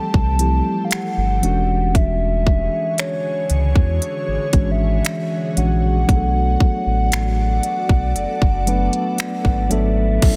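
A slow, straight 4/4 trap beat at 58 BPM, with a hard-clipped kick, crisp hats, finger snaps, crash and a soft-clipped snare, sits up front beside a deep sine sub bass with octave in this dreamy, smooth contemporary R&B excerpt, while a mellow tine electric piano and an ethereal, airy pad with ensemble chorus, phaser and built-in reverb carry Fmaj9, E13 and Bm7 under a hollow, woody, clarinet-like synth lead with chorus and vibrato, before a very quiet electronic impact lands at 10.3 seconds in a dense, heavily limited modern master.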